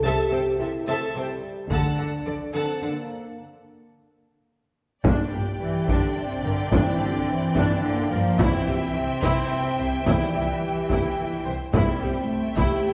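In a straight 3/4 at 108 BPM, this dark, epic orchestral film-score passage in G dorian sets a smooth, vibrato-laden chamber violin melody over a lush, focused symphonic violin second line, distant light-vibrato violas and mellow, roomy French horn chords, with rich cellos and intense, clear double basses anchoring the bass. A hard-stick taiko ensemble with a vintage, band-limited sound enters at 1.7 seconds. The basses fall silent at 2.0 seconds and the cellos at 2.9 seconds, ahead of a break from 3.4 to 5.0 seconds, before the music moves from Am7/C and D into a Gm-to-C passage. The whole is heard from further back on a wet scoring stage, cut from a longer piece.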